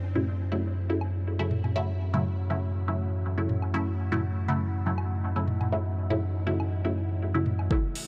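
Dub techno at 121 BPM in F# dorian with a meditative, hypnotic feel, this short excerpt rests on a single F#m7 chord: a dark, detuned ambient pad drifts in the background with chorus and its own reverb, a round sine sub bass holds F#2 up front, a filtered chord stab with phaser, 12-bit sampler grit and dub echo plucks over tape-toned electronic toms and woodblock, all of these pumping to the sidechain, while an overdriven kick arrives only at 7.7 s and a metallic hi-hat at 8.0 s.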